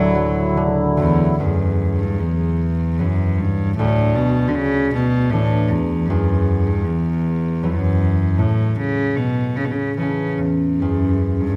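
Rubato, unevenly pulsed 3/4 at 76 BPM carries this haunting, longing Celtic slow air, cut from a longer piece, as one bowed cello sings the melody up front with a biting, earthy tone and smooth top, a ringing, fingerpicked concert harp accompanies in a mellow acoustic voice, and a reedy, slow-beating accordion holds close, dry chords only until 1.4 s, inside a moderate recital hall reverb over harmony moving from Dadd9 through Esus2 and Dsus2 to A before the chords fall away at 10.8 s.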